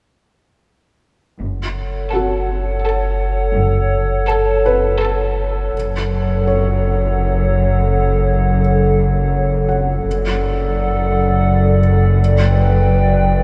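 A warbling, lo-fi pad stands up front in this eerie, tense suspense cue from a film score, holding dark sustained chords high over the ensemble with a nostalgic, chorused haze. At 84 BPM in 3/4, the low end enters at 1.4 seconds: a pure sine sub bass drones on F#, a focused double bass section bows beneath a smooth cello section that sits in the background. A distant, intense violin section holds an A from 2.1 seconds until it stops at 5.6 seconds, while a felt-muted upright piano adds soft, intimate texture with audible action noise through 12.2 seconds. The harmony rests on F# minor in an F# phrygian colour, shifting to D over F# and then G over F# above the unmoving bass. A vast cathedral reverb bathes the whole, giving the music a cavernous, unsettled air in this cut from a longer piece.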